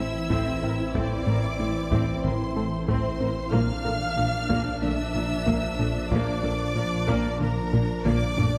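A straight 4/4 pulse at 93 BPM drives this relentless, futuristic piece of hybrid orchestral and electronic film score, with a tight, driving sequenced synth arpeggio and a punchy, funky, wave-folded analog bass riff over a thick, menacing detuned saw bass, while a taiko ensemble on heavy sticks enters at 0.3 s and closes with a fill from 7.7 s. Above, a lush violin section carries a high melody with vibrato, a second violin section plays a lower line, and a distant viola section accompanies, joined by rich cello and double bass sections on the bass, a mellow French horn section and a background trombone section holding sustained chords. An ethereal, airy pad with phaser adds quiet sustained harmony as the chords move from Am to Bb at 3.5 s, all set in moderate scoring-stage reverb in this short excerpt.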